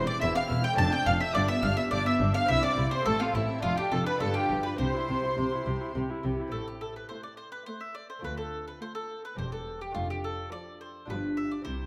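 Mandolin, two violin sections, viola section and lute open together in this festive, lively baroque-style concerto movement in C major, a brisk 105 BPM in 3/4, with cello and double bass sections joining at 0.2 seconds. The woody, up-front mandolin carries the melody beside a high violin line with a smooth top, while a closer violin section adds a second line and nasal violas and a bright, delicate fingerpicked lute fill the accompaniment above a dark cello and rich double bass, all the bowed strings sounding reedy with gut-string tone and light period vibrato. A moderate concert-hall reverb surrounds the ensemble, and the cut from a longer piece moves from a C major opening to a passage settling on A minor at 6.5 seconds before closing on G7.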